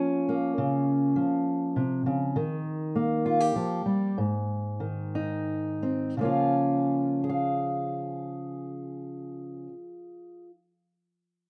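Lightly reverberant, this short folk fragment in 3/4 centres on a dark, up-front fingerpicked steel-string acoustic guitar, with finger squeak audible. The guitar carries the accompaniment throughout, moving through rich chords with a heartfelt, hopeful feel. It slows between 2.4 and 6.2 seconds before settling back onto the opening chord for the closing phrase.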